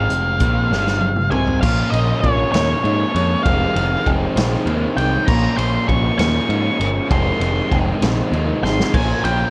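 Indie rock in a restless, moody 6/8, this short excerpt pairs a dark, fuzzy octave-fuzz lead guitar melody up front with a growling, overdriven picked bass, while two overdriven guitars (one crunchy, one bright with lush chorus) play riffs in the background, a barely audible glassy FM synth bell adds a second line, and a vintage drum kit with dark cymbals and a punchy kick plays fills from 0.7 to 1.6 seconds and again near 8.6 seconds, all under light reverb and worn, warbling cassette-tape pitch drift as Fm and Bbm7 chords alternate.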